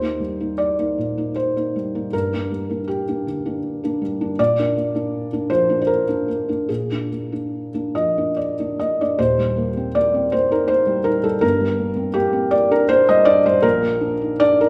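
In a rubato 3/4 sway around 70-82 BPM, this wistful, melancholic neoclassical minimalist piece features a solo felt-muted upright piano, its thick-felt tone dark, intimate and up front with short sustain, cycling through Eb, Gm and Bb from Eb1 to Eb5 before the phrase returns at 9.2 seconds, all set in a moderate recital hall reverb.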